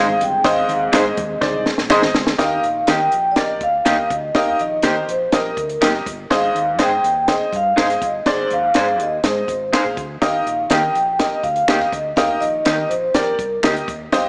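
Opening on a ringing, metallic vibraphone played with soft mallets carrying the melody over bright, woody upright piano, dark, round fingered bass, slightly broken-up lo-fi electric guitar stabs and a mellow, flute-like tonewheel organ with chorus vibrato and a slow rotary speaker that drops out at 2.4 seconds, this joyful uptempo 1960s-style soul excerpt in Eb major at 123 BPM also features faint low-tuned congas until 2.1 seconds, very quiet close finger snaps, and a punchy, dry cocktail drum kit with a high-tuned snare whose fill leads into the next section at 2.4 seconds, set in light small-room reverb with a small-speaker sound.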